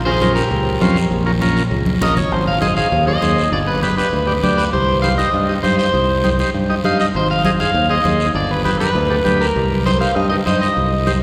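A twangy electric guitar at the edge of break-up carries the melody up front, its fingered tone slightly broken-up and bathed in spring reverb. This is a sunny, joyful cumbia in Ab major at a brisk 199 BPM in straight 4/4, cut from a longer piece. A growly, direct fingered electric bass sits just as far forward, while a vintage, buzzy overdriven combo organ fills in the accompaniment a little further back. Hard-handed, low-tuned congas with a thin-skinned snap stay in the background, joined by a raspy guiro. A short fill at 1.9 s leads from the opening Bbm into a cycle of Ab, G and Cm from 2.3 s, and the whole band rings out in the long wash of a cathedral-like hall.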